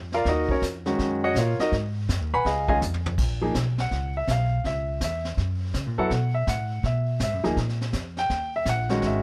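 A pizzicato upright bass opens this swinging, late-night jazz piano trio fragment, its gut strings giving a woody, thumpy tone that sits up front. A concert grand piano joins almost at once and carries the melody as a solo through the whole passage, sounding clear and natural with a deep low end. Brushes on a vintage kit sit further back in a small room, with a high-tuned snare, punchy kick and a rolled-off top, and they fill in crash, hi-hat and toms. A drum fill from 2.8 to 3.2 s marks the turn into a new passage, where the harmony moves from dark minor-seventh colours toward major-seventh and bare fifth chords. Light reverb lends the acoustic trio a gentle, intimate space, and the clip is cut from a longer piece.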